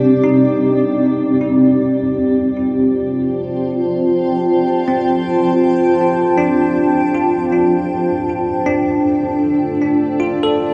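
A blurred, granular cloud pad and a bell-like tine electric piano open this weightless, serene ambient fragment at 79 BPM in 4/4. The detuned, full-bodied pad holds sustained chords up front with its own built-in reverb and a filter sweep, while the electric piano's bright, clean arpeggios shimmer through analog chorus and delay. Both parts sit in a huge, wet reverb as the harmony moves from Cm to F and then Dm7 at 7.9 seconds, before the passage is cut off from a longer piece.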